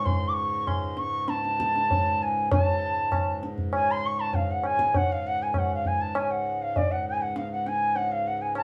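Hindustani classical music, serene and meditative, cut from a longer piece and gathering speed over its 8.6 seconds, with an airy, bright bamboo bansuri carrying the melody up front, a mellow, breathing pedal harmonium holding a low, close-miked drone beneath it, and low-tuned, ringing tabla entering at 0.1 seconds, all played live together in a small room with a wet studio ambience.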